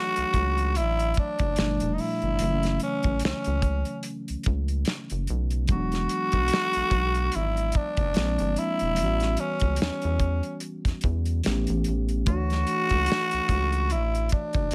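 R&B and neo-soul excerpt with a sultry, introspective mood, in which a raspy, growling tenor saxophone carries the melody up front with light vibrato and a slapback echo, over mellow tine electric piano chords moving from Dmaj9 through E9 and A13 before returning to Dmaj9, joined at 0.2 seconds by a rubbery, saturated square bass and a dry, damped 70s drum kit with a tight kick, the whole set in a light reverb.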